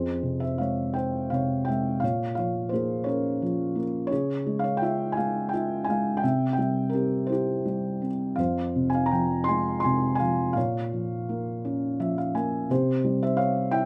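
Classical solo piano in a dark, wistful mood, moving at a rubato 56 BPM in dotted quarters of 6/8 and set in F harmonic minor, with the harmony passing from Fm through Bbm, Db and C before returning. A felt-muted upright piano carries the whole passage from F2 to C6, its thick felt giving a soft, intimate, vintage tone with audible action noise, and a brief fill at 11.6 s leads toward the closing C chord. A small room's moderate reverb frames the up-front piano in a dark, warm production, cut from a longer piece.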